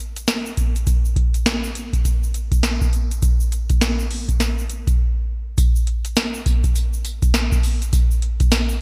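A booming analog drum machine leads this short, flirty and upbeat R&B fragment, cut from a longer piece. Its deep kick, crisp snare, metallic hi-hats and tambourine sit up front, sounding dry and electronic, with a gated reverb on the kit. The groove carries a swung sixteenth-note feel in 4/4 and starts at 0.2 seconds. An egg shaker with a grainy, acoustic character and a live-room quality stays in the background underneath. A break arrives at 5.0 seconds, and the music moves into a new section at 5.6 seconds. The production is bright and digital in a 1980s style, with a light reverb around it.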